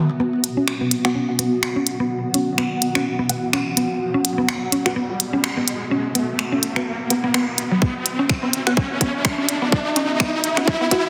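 Cool and quirky, this minimal techno fragment from a longer piece runs at 126 BPM in 4/4 with a light 16th-note swing, resting on a B5 chord as it builds throughout. A woody, round mallet-like synth pluck carries the riff with a fast attack and short decay, dressed in chorus and dub echo and pumping against the sidechain, while a filter sweep moves across it. Behind it, a blurred granular cloud pad with a slow attack and long release drifts and breathes with its own reverb. A muted, dark filtered dub chord stab sits in the background with phaser, lush chorus and digital delay, also under a filter sweep. An up-front minimal click drum kit of finger snaps and clicky, overdriven hi-hats keeps time, an electronic riser climbs from 1.7 seconds, and a tight, overdriven electronic kick drum lands at 7.8 seconds. The mix is dense and heavily limited, with a moderate plate reverb.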